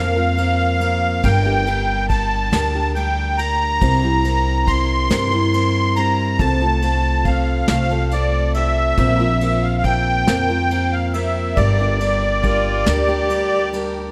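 Light reverb surrounds this gentle, nostalgic acoustic folk excerpt, played by a small band in a straight 6/8. A close-miked, dry musette accordion carries the melody up front, its reedy, shimmering tone sitting high and full over the ensemble. Picked steel-string acoustic guitar supplies the accompaniment, while a pizzicato upright bass, woody and dark, stands forward beside the accordion. A vintage brush kit of kick, snare and ride cymbal enters at 0.4 seconds and stays in the background, its dark cymbals and rolled-off top keeping it soft. Near the close, at 12.4 seconds, a single cello joins with an intimate second line, bowed sul tasto with an airy touch, light vibrato and a soft attack.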